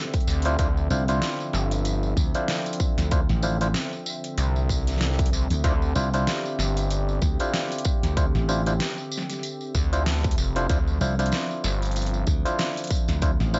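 Gritty and funky, this glitch hop excerpt swings at 95 BPM in D minor, resting on a single Dm9 chord throughout. A punchy, overdriven electronic kick and a dubstep kit with a deep snare and metallic hats drive the groove alongside a jingly, vintage tambourine, while an aggressive, wave-folded synth bass and a bright, amped slap bass sit up front. A percussive, stringy clav adds stabs with delay and sidechain pumping, and a smooth, warbling analog pad holds sustained chords with chorus in a dry, dark-topped mix.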